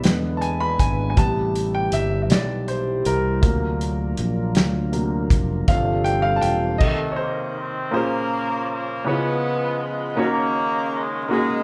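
Jubilant and uplifting, this slow gospel passage moves at 53 beats per minute in a straight 6/8, cut from a longer piece. A clear baby grand piano takes the solo spotlight through the opening, playing accompaniment over a full band. Underneath it, a punchy fingered electric bass and a soul drum kit with dark cymbals and a rolled-off top sit close, while a tonewheel organ turns slowly through its rotary speaker and a very quiet French horn section holds dark, smooth chords. At 6.8 seconds the band stops; the bass, organ and French horns fall away as the drums drop out shortly after. A mellow pop-style horn section with light vibrato then carries the melody over the piano as the harmony slides from Cm6 toward Bbm9, Db7 and Gb6. The ensemble plays together live in one room, framed by a moderate large-studio reverb.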